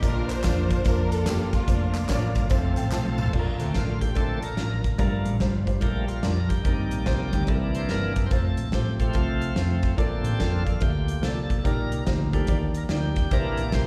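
Heard through a live venue's PA with recital-hall reverb, this uptempo, swung gospel excerpt at 144 BPM in Bb major feels reverent and hopeful: a soft-edged bowed string section carries the melody until 2.3 s over intimate grand piano with audible action noise, tambourine and handclaps play until 3.2 s, and after a piano and drum fill the bright, shouting tonewheel organ, lightly overdriven through a fast rotary speaker, takes a solo from 3.3 s over round, punchy hollow-body bass and an up-front soul kit with a fat snare and dark cymbals.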